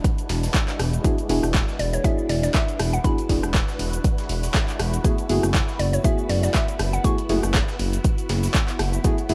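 Deep house with a smooth, warm mood, this short excerpt moves at a swung pulse over a dry mix dusted with vinyl crackle. A deep, tape-warm electronic kick sits up front, joined by a punchy analog drum machine whose overdriven handclaps, hi-hat, rim click and shaker ring in a large room, while a gritty, compressed breakbeat sampler-style kit adds very quiet hi-hat and snare. A silky string machine holds dark, sustained chords through phaser and ensemble chorus, and a smooth, dark synth bass enters at 0.3 seconds, both pumping against the kick. A barely audible downlifter opens the track before deep, nasal, full-bodied chord stabs arrive at 1.0 seconds, moving from E9 to F#m11 at 5.0 seconds. Above them, a woody, round mallet-like pluck carries the melody with a warbling chorus and tape echo from 1.8 to 8.0 seconds.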